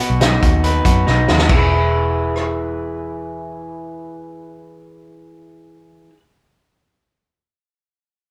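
Youthful and nostalgic, this short jangly indie pop excerpt in E major moves at 139 BPM in a straight 4/4, with a slightly broken-up, lo-fi electric guitar through a small old amp playing up-front arpeggios over a dark, round, foam-muted picked bass while a loose acoustic drum kit with a punchy kick and rolled-off top plays a fill from 1.1 to 1.5 seconds as the harmony moves from B to E, then drops out at 2.5 seconds, all caught with light reverb as a band playing live in one room.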